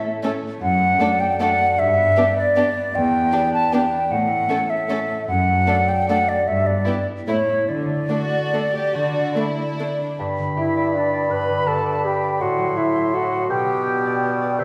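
A lilting 3/4 pulse with gentle rubato carries this elegant, sweeping orchestral ballroom waltz, cut from a longer piece. A pure, expressive flute sits up front on a second line over ringing fingerpicked harp arpeggios, while soft-attack violins carry the melody beside a second violin line in the background, with dark, woody violas and a rich, floating cello bass filling out the lush string bed. At 10.2 s the strings give way as the music moves into a new section, where a smooth oboe adds a second line over clear bassoon accompaniment, joined shortly after by a mellow clarinet on another second line, all bathed in the wet reverb of a recital hall.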